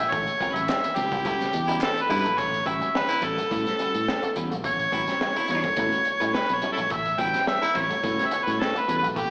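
A straight 4/4 groove at 106 BPM drives this strutting funk excerpt: a crunchy, gritty breakbeat kit with a punchy kick and high-tuned snare joins a fingered electric bass under an up-front, overdriven harmonica lead full of tongue slaps and scooped notes, while a clean, compressed electric guitar and a twangy envelope-filtered guitar with chorus and slapback echo sit in the background, a raspy, distant baritone saxophone adds a second line from 1.1 to 7.8 seconds, very quiet group handclaps appear briefly early on, and the band, opening on accented hits over an A13 chord, sounds like a live gig heard through a venue PA with recital-hall reverb and a small-speaker tone.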